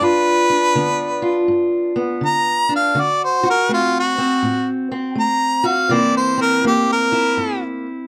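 A dry, close 1970s-style studio sound with light reverb frames this short, swaggering and soulful acoustic country blues duo at 82 BPM, swung in 4/4 over G7, D7 and C7. Up front, a warm harmonica sings the jazz-style solo melody with light vibrato, scooped notes and a smooth top, and it drops out at 7.6 s. A fingerpicked steel-string parlour guitar with old strings accompanies it in a dark, woody, boxy voice until 8.1 s.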